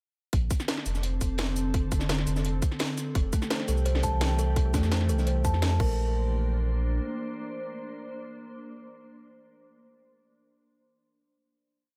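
A deep, round sub bass sits up front in this short, uplifting liquid drum and bass piece, holding long gliding notes with a touch of tube saturation until about 7.0 s. Beneath it, a glassy, ethereal FM pad carries sustained, warbling chords with ensemble chorus and its own reverb, moving from Bbmaj9 to Fmaj9 and on to Bbadd9 before it rings out alone at the close. The drums drive the drop with a tight, overdriven electronic kick and a layered kit of cracking snare, bright hats, cabasa and crash playing rolling two-step patterns. A dark, gritty acoustic breakbeat loop with edits and a high-tuned snare sits in the background, its top end rolled off. At 3.2 s a woody, buzzing kalimba enters with an eight-step repeating arpeggio through analog delay, and the whole piece sits in a small room with light reverb.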